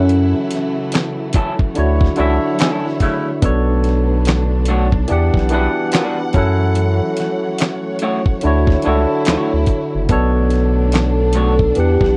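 A barky, lightly overdriven tine electric piano with lush chorus accompanies this smooth, sultry neo-soul R&B excerpt over swung sixteenths, carried by a round, deep analog bass and a gritty sampler-style drum kit with thumpy kick, fat snare, hi-hat and handclaps, while a slightly broken-up lo-fi electric guitar plays a second line from 0.9 s, a dark, distant horn section adds stabs at 2.6 s, expressive bowed strings sustain chords underneath, and a velvety synth lead with tape echo and vibrato sings the melody briefly at the start and again at 11.0 s, captured in a dry, close 1970s-style studio sound.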